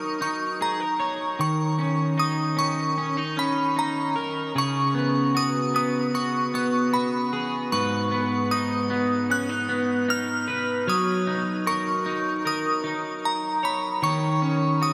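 Ethereal and haunting, this dream pop fragment pairs a glassy, crystalline synth bell melody, colored by chorus, phaser and tape echo, with twangy, slightly broken-up electric guitar arpeggios under analog chorus and tape echo, both up front and sounding throughout a mix soaked in huge ambient reverb.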